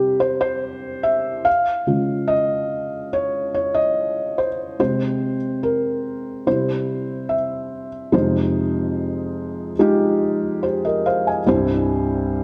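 A felt-muted upright piano opens this pop excerpt alone, its soft, mellow tone sitting up front with the noise of the action audible in the sound. The mood is melancholic and longing, set in F minor at an unhurried 72 BPM in a straight 4/4. The harmony moves from C through Dbadd9 and Abadd9/C before returning to C. At 8.1 seconds the second passage settles onto Fm7, then turns back to C at 11.5 seconds. The thick felt gives the piano an intimate, hushed quality across its range from C2 to Ab5. A moderate scoring-stage reverb and a dark, warm production surround the instrument in a gentle space, and the recording is a fragment cut from a longer piece.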